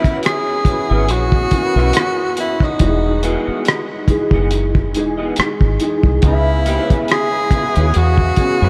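A dreamy mix soaked in huge ambient reverb wraps this late-night, smooth neo-soul and R&B fragment, cut from a longer piece, in a soft haze. A breathy, close-miked tenor saxophone carries the jazz-style melody up front with vibrato. Beneath it sit a woody upright piano with audible action noise and ensemble chorus, a twangy, slightly broken-up electric guitar with analog chorus in the background, and a muffled, cloth-damped drum kit of hi-hat, tight kick and rim click, while a round, dark fingered electric bass enters at 0.1 seconds, prominent in the mix, as the chords move from F#7sus4 to Emaj9 to C#m7.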